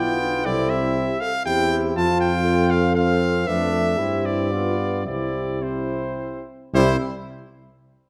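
A dark production in a wet recital hall with a 1.4-second reverb frames this stately classical brass quintet passage in 3/4, cut from a longer piece and played with rubato. A bright trumpet with light vibrato carries the melody up front over a soft-attacked, close-miked flugelhorn second line, while a clear trombone and a distant, roomy French horn accompany from the background and a mellow tuba anchors the bass up front. The harmony moves from C through F, Dm/F, C/G and G7 back to C, with the players slowing down from 2.7 to 6.7 seconds before arriving on a final C5 chord.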